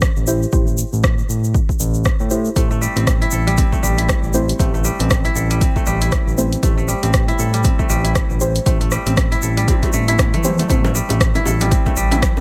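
A fingerpicked, ringing kora enters at 2.6 seconds with crisp arpeggios carrying tape echo and sidechain pumping, over a smooth, evolving sawtooth synth bass with tube saturation and dark, nasal chord stabs on an Am7 in this hypnotic, driving afro house excerpt at 118 BPM with swung sixteenths. A punchy, overdriven electronic kick anchors a deep house kit of dark hi-hats, rim clicks and toms, re-recorded in a small room, while a grainy, bright egg shaker sits close and dry. After a drum fill from 9.7 to 10.7 seconds, round, low-tuned bongos join in the background at 10.8 seconds, all set in a digital ambience.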